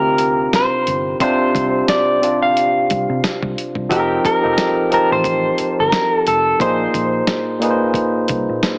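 Neo-soul R&B with an introspective, sultry mood, this short clip cut from a longer piece moves with a lightly swung 4/4 feel. An electric guitar through a small old amp carries the melody up front, its picked tone twangy and slightly broken-up with a lo-fi edge. A barky tine electric piano, also up front, provides the accompaniment, lightly overdriven through a combo amp and trailed by analog delay. Underneath, a vintage foam-muted fingered electric bass adds a dark, round low end, while a dusty, compressed sampler-style drum kit enters at 0.2 seconds with a thumpy kick, gritty medium-tuned snare and hi-hat. The harmony drifts through suspended ninth chords, from C9sus4 to F9sus4 at 3.9 seconds and Bb9sus4 at 6.6 seconds. A moderate spring reverb and an echo-heavy mix give the whole a small-speaker sound.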